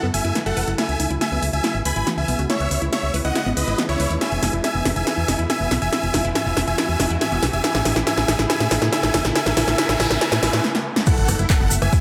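Euphoric, uplifting trance built as an 11-second build-up, with a huge, detuned supersaw lead carrying the melody over a dark, round FM bass, all pulsing with sidechain pumping, while a bright unison pluck plays arpeggios under a filter sweep with phaser and tape echo, and a shimmering, ethereal pad holds chords with chorus in the background. A punchy, overdriven analog drum machine plays a fill of snare, handclaps, hi-hat, rim click and crash. A faint riser enters at 0.7 seconds, and a noise sweep rises from 9.4 seconds into a short break at 10.6 seconds. At 11.1 seconds an impact lands, bringing in a tape-warm electronic kick drum and a grainy egg shaker, all set in a lush hall reverb.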